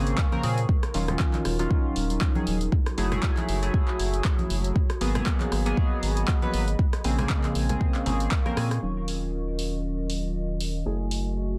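Deep house at 118 BPM in Eb minor with a swung, late-night glow. Glossy chorused polysynth stabs with analog delay ride over a round, up-front analog bass, with a warbling, lo-fi tape-like pad drifting behind them, all three pumping against the sidechain through a cycle of minor-ninth chords. A deep, layered electronic kick, a tape-tinged analog drum machine with handclaps, hi-hat and rim click, and soft-handed congas drive the groove, until a drum fill at 8.4 seconds gives way at 8.8 seconds to a filter sweep on the polysynth as the kick and congas fall away.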